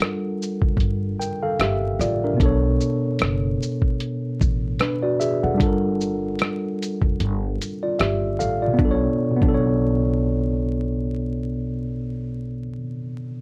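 Vinyl crackle and a light reverb give this lo-fi hip hop fragment, cut from a longer piece, a hazy, melancholic air. A mellow tine electric piano sits up front, its worn, slightly out-of-tune tone rounded off by cassette-tape coloring and a low-pass filter as it moves between Gm7 and Bm7 chords. The compressed, muffled sampler-style drum kit carries vintage 12-bit grit and a gentle swing, with hi-hat, rim click, shaker and a thumpy kick; the kick drops out briefly before the whole kit stops at 9.6 seconds. Underneath, a woody, dark upright bass played pizzicato on steel strings enters at 0.6 seconds and stays low in the mix. The piano and bass carry the final seconds together, and the piano lingers briefly after the bass stops.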